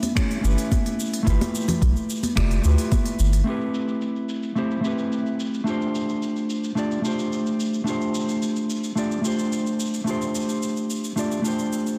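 Sunset chillout with a sunny, warm mood, built on a dark, clean, fingered electric guitar up front with delay, its chords moving from A9 and G13 to Am9 and G9sus4, over a smooth R&B kit of finger snaps, filtered hi-hat and shaker with a tape-warm tone, while ringing, high-tuned congas, a soft electronic kick and a deep, round sine sub bass all drop out by 3.4 s, leaving guitar and kit in a lush hall reverb under a dense, heavily limited master.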